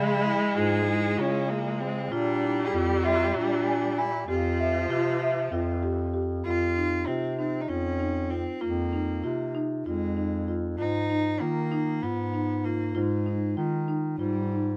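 A nasal, earthy bowed cello carries the melody with light vibrato through this hypnotic, pensive excerpt of contemporary chamber music in 7/8 at 194 BPM (eighths), tuned to A4 = 435 Hz and moving from F harmonic minor into F minor at 6.4 s. A close-miked bass clarinet with scooped notes and a jazz-style voice holds the bass, while woody, band-limited marimba arpeggios on rosewood bars ripple alongside. An expressive viola with vibrato and portamento sings a distant second line until 6.1 s, all set in light reverb.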